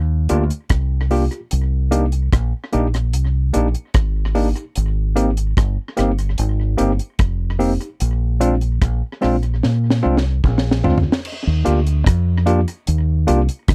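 A straight 4/4 lovers rock reggae groove, tender and sweet, rides on a dry, dark reggae kit with a high-tuned snare, tight kick, rim clicks and tape-echoed hits, a round, deep fingered dub bass, and a worn, slightly out-of-tune tine electric piano with light overdrive playing seventh chords, all close and up front in a 1970s-style studio sound, with a drum fill from 9.6 to 11.2 seconds leading into a new section before this short cut from a longer piece ends.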